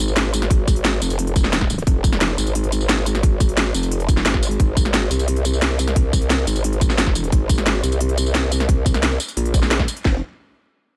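A growling, saturated bass with chorus and sidechain pumping opens this aggressive, futuristic dark technical drum and bass excerpt. It is joined by two up-front, tape-warm electronic drum kits: one brings crisp hats, tambourine and a cracking snare from 0.1 seconds, and the other adds a tight kick, handclaps and its own cracking snare from 0.5 seconds, all in a dry mix.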